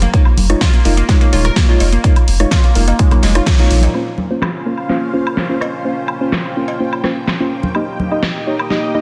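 Straight 4/4 drives this bittersweet, emotional progressive house passage, where a punchy, layered electronic kick sits up front until 3.6 s beneath a big-room dance kit with a huge, softly clipped snare and filtered hats, a filter sweep on the drums from 3.9 s, and bright, close congas, woodblock and cowbell played with hard hands and pumping to the sidechain; alongside them a thick, saturated sub bass, crystalline wavetable pluck arpeggios treated with chorus, phaser and digital delay, and deep, nasal chord stabs carrying 12-bit sampler grit all pulse against the kick, joined at 4.2 s by a lush, detuned unison pad with a slow attack and long release, all in light reverb and a dense, heavily limited modern master.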